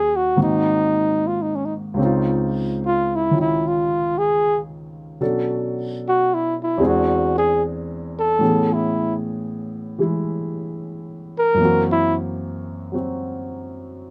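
Intimate and romantic, this jazz ballad excerpt has a gentle swing and pairs a mellow flugelhorn, played with light vibrato, against a warm grand piano whose action noise can be heard up close. The flugelhorn carries the melody and moves into a solo at 2.0 seconds over rich, shifting harmony, then drops out at 12.2 seconds so the piano finishes alone. The sound is dry and detailed, with both instruments placed up front.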